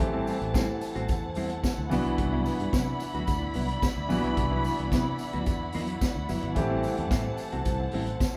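Disco at 110 BPM in a straight 4/4, this short, sultry and glamorous excerpt moves from Am7 to Cmaj9#11 at 1.9 seconds and back to Am7 at 6.6 seconds, with the whole band playing live in one room under a wet, large studio reverb. A vintage acoustic drum kit with a tight kick, medium-tuned snare, hi-hat and a pumping, rolled-off room sound plays alongside a round, foam-muted fingered electric bass. A clear baby grand piano with long sustain provides accompaniment, while a clean, compressed semi-hollow electric guitar sits in the background. Above them a dark, woody, lush studio string section holds bowed, vibrato-rich chords with a smooth top, and a jingly tambourine joins softly at 0.3 seconds.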